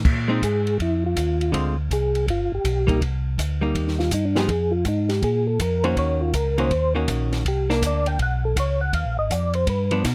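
A brisk, swung 4/4 groove drives this greasy, soulful soul jazz organ trio. The compact cocktail kit is dry, with a punchy kick, a high-tuned snare and dark crash, ride and hi-hat cymbals. Underneath, a round, lightly overdriven tonewheel organ carries the bass line through chorus vibrato and a slow rotary speaker. A clean, compressed hollow-body archtop guitar, picked and amplified, accompanies from 0.3 seconds, while a flute-like, percussive tonewheel organ with second-harmonic percussion takes the lead from 0.4 seconds, swirling through its own slow rotary and chorus vibrato over chords that wander from Bb7sus4 through Cm7 and Ebm7 back to Bb7sus4. Every part sits up front, closely miked with little reverb, in a short cut from a longer performance.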